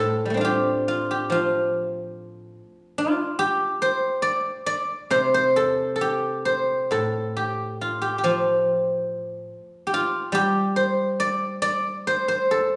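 Serene and pastoral, this short passage of Chinese traditional music, cut from a longer piece, features a solo guzheng played with fingerpicks in a loose, rubato 2/4, its ringing, silvery tone spanning from low A2 up to D5. The instrument sits up front, acoustic and warm, while a wet recital-hall reverb gives each plucked note a lingering, spacious bloom across the 12.8 seconds.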